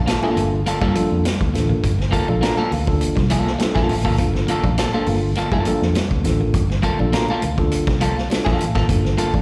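A straight 4/4 funk groove at 102 BPM in G minor, this cool, funky passage cut from a longer piece is driven by a gritty, saturated vintage drum kit with a tight kick, hi-hat and medium-tuned snare sitting up front, under a dark, round and punchy fingered electric bass and very quiet, close, high-tuned congas. A bright, twangy electric guitar at the edge of break-up carries the accompaniment up front, while a clean picked guitar plays a riff in the background and a mellow tine electric piano adds stabs through its built-in speakers, all three guitar and keyboard parts touched with slapback echo. Holding on a single Gm9 chord for 9.4 seconds, it sounds like a live gig heard through the venue's PA in a recital hall.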